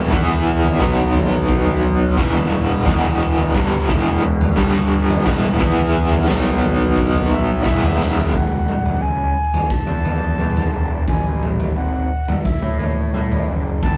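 A rough rehearsal-room recording with light reverb frames this hypnotic, trippy psychedelic rock excerpt at 88 BPM in 4/4, where a double-tracked, overdriven garage guitar riff and a punchy, up-front drum kit with a rolled-off top ride over a growly fuzz bass, a buzzing, shimmering tanpura drone and very quiet, mellow French horn chords, until a breathy silver flute melody with vibrato enters at 7.3 seconds and, after a drum fill, the guitar and horns stop at 8.3 seconds, leaving the flute to carry on with the bass, tanpura and drums over Esus4 and A.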